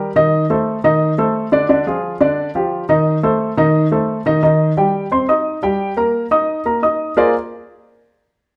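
A baby grand piano opens this lively, danceable jazz passage on its own, moving at a brisk 175 BPM in a straight 4/4 feel in Bb major. The piano's tone is dark and mellow, sitting up front with an intimate, natural quality, where the mechanical action can be heard and notes decay quickly. Its range spans D3 to Eb6 as it moves through a Cm69 chord, a Ddim and a bare G5 before landing on Adim/Eb. From 4.4 seconds the harmony moves through Eb, Cm, Eb/G and a Bbsus4, reaching a closing Bb9 at 7.2 seconds before the piano stops at 7.3 seconds. A wet, large studio reverb with a 1.1-second tail adds a generous sense of space around the close instrument in this short clip cut from a longer piece.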